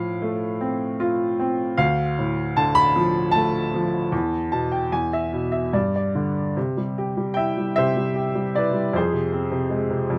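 Close, detailed microphones and light reverb give this short passage from a longer classical piece an intimate, up-front presence. A single upright piano carries it alone, its tone clear, woody and natural, spanning D2 to B5. The mood is calm and tender, a lyrical solo in 3/4 at 77 BPM with a rubato feel, tuned to A4 = 439 Hz. The harmony moves from F/A through Dm to E5 and G5 chords, with a piano fill between 4.1 and 6.6 seconds before the music settles into C major at 6.6 seconds. A shift to Fm colors the final moments before the passage ends at 10.2 seconds.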